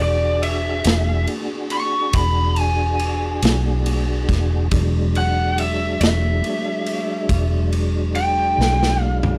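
An overdriven lead guitar, pushed through a small cranked amp, carries a lo-fi, picked solo across this gritty, laid-back slow blues in a straight 12/8. Beneath it, a tonewheel organ holds sustained chords with audible key click, slow rotary speaker, chorus vibrato and light overdrive, keeping its tone clear and warm. A vintage fingered electric bass sits up front in the mix, dark, round and foam-muted, anchoring the low end on a single E7 chord. A raw garage drum kit comes in at 0.4 seconds with punchy kick, medium-tuned snare, ride cymbal and toms, all saturated in a bright stone room that pumps. The drums close with a fill from 8.6 seconds, and the dry sound of this short cut leaves the guitar solo raw and immediate.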